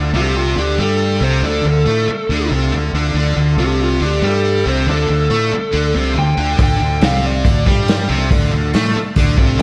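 A double-tracked fuzz guitar riff drives this gritty, heavy blues rock and southern rock fragment, joined up front by a growly overdriven fingered bass, while a dark lead guitar through a small cranked amp carries a slapback-echoed melody from 0.2 s to 7.7 s, an overdriven tonewheel organ holds thick chords through a slow rotary speaker and chorus vibrato in the background, and a muffled, lo-fi vintage drum kit with a punchy kick enters at 6.6 s, the whole band sitting in a big arena-style reverb.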